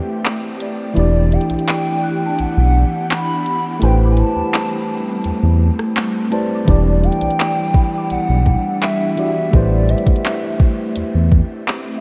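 A clean tine electric piano, heard as if through its built-in speakers, opens this late-night contemporary R&B excerpt in E minor alongside an ethereal, airy pad treated with ensemble chorus, phaser and its own reverb. Above them, a very quiet, slightly out-of-tune celesta adds delicate, bell-like sparkle until 9.7 seconds. A soft electronic drum kit comes in almost at once with kick, rim click, hi-hat and handclaps, sitting up front with a tape-tinged character at a relaxed 84 BPM in a straight 4/4. A mellow lead glides in with portamento and vibrato at 0.6 seconds, colored by chorus and analog delay, and a dark, smooth synth bass with sliding notes follows at 1.0 second as the loudest part of the mix. The harmony rocks between Am9 and Em9, and the passage sits in a dreamy wash of huge ambient reverb that deepens its longing mood.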